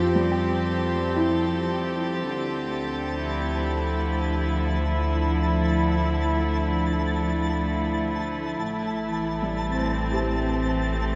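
A rich, earthy chamber string section holds sustained chords up front in this peaceful, serene ambient piece in free time, moving from Fmaj7 through Dm7 to Am7, while a soft, mellow felt-muted upright piano plays delayed arpeggios from 0.0 to 3.7 seconds and again from 9.4 seconds as it fades out, a round, deep analog bass sustains beneath, and a twinkling granular texture with sparkling shimmer fades in from the background, the whole heard in a wet concert hall acoustic.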